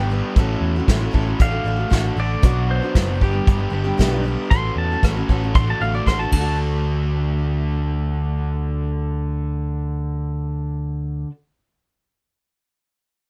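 Jangly and open-road, this short folk rock and heartland rock excerpt moves at 116 BPM in a straight 4/4 in D major, with a clean, compressed pedal steel guitar taking a fingerpicked slide solo full of volume swells for the first 6.6 seconds. Beneath it, a picked steel-string acoustic guitar with audible finger squeak picks out a chordal accompaniment, a dark, overdriven, double-tracked garage guitar plays a riff, and an up-front, amped electric bass holds the low end. A soft brush drum kit with a punchy kick and roomy, distant character plays until a fill at 6.3 seconds, and the whole dry mix has little reverb.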